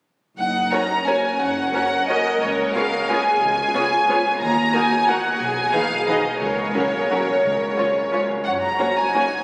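An elegant, festive orchestral ballroom waltz in F# major at 179 BPM, heard as a short excerpt cut from a longer piece, opens at 0.4 s with muted violins carrying a veiled, dark melody up front with light vibrato, over muted cellos and double basses, joined at 0.7 s by a lush second violin line and a rich, soft-edged viola accompaniment in the background, all bowed con sordino with rubato and uneven beats, and bathed in a cathedral-like reverb with a phone-in-the-room compressed sound.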